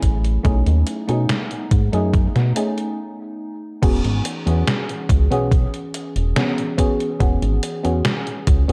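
Cassette-tape grit colours this short vaporwave excerpt, which sits dry and close with little room around it. The mood is woozy and nostalgic, carried over a straight four-beat pulse. A thumpy electronic kick and a glossy, nasal chorused synth bass sit up front. A detuned 8-bit drum machine adds crash, hi-hat and a medium-tuned snare, both drum parts roughened by overdrive, with gated reverb on the drum machine. Behind them, a soft, round FM electric piano plays accompaniment through phaser, lush chorus and tape echo, while a warbling, lo-fi tape-like pad holds dark sustained chords in the background. The harmony rests on a B13 chord until a brief break from 3.0 to 3.8 seconds, after which the music settles onto E6 for the closing section.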